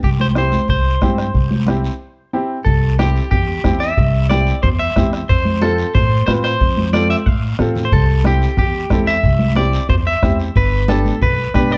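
The recording has a dark, warm production with light reverb, and it is cut from a longer piece. It is a danceable, festive cumbia in C major at 182 BPM in a straight 4/4. A bright, twangy clean electric guitar carries the melody up front, picked and treated with spring reverb and slapback echo. A woody pizzicato upright bass anchors the low end, while a close, dry bombo with a soft beater drives the pulse. Thick-skinned, vintage-toned congas sit in the background and a raspy guiro adds texture, with a clear, intimate upright piano entering at 0.4 seconds for accompaniment, its action noise audible and its sustain short. A break arrives at 2.0 seconds and a drum fill at 6.9 seconds as the harmony moves from C through F and back to C before landing on G.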